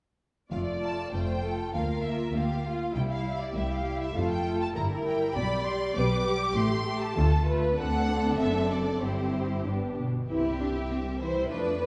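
A focused, lush violin section carries the melody high above a smooth, even second violin line in this lively, spirited classical-period movement for string orchestra, taken at 99 BPM in 2/4 with a rubato feel. Soft-attack violas, expressive cellos and a rich double bass section fill out the harmony and bass with bowed vibrato, as the music moves from F major to C major at 5.4 s and reaches a new section at 10.3 s. The strings are heard from further back in a reverberant recital hall, in this short passage cut from a longer piece.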